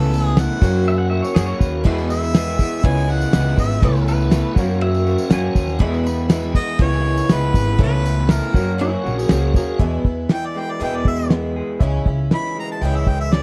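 A steady, straight 4/4 pulse at 121 BPM comes from a cloth-damped, thuddy drum kit sitting up front, with a fat snare, tight kick and dark cymbals, under a growly, woody pizzicato upright bass. This is a jangly, nostalgic stretch of folk rock and heartland rock in E major, cut from a longer piece. The chords move through a repeating Aadd9/C#, F#, E and C#m7 cycle. A shimmering, octave-doubled twelve-string acoustic guitar is picked in the background, while an electric guitar through a small old amp plays a slightly broken-up, lo-fi riff. A very quiet upright piano adds its woody tone, and a jingly tambourine rides low in the mix. A tonewheel organ holds piping, scooped chords with key click and slow rotary speaker. A twangy pedal steel guitar with volume swells weaves a second line from 0.9 s. The distant, punchy harmonica carries the melody with light vibrato and takes a solo from 9.8 s, when the organ, steel and tambourine drop out. 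The sound is a dry, close 1970s-style studio recording in a small room.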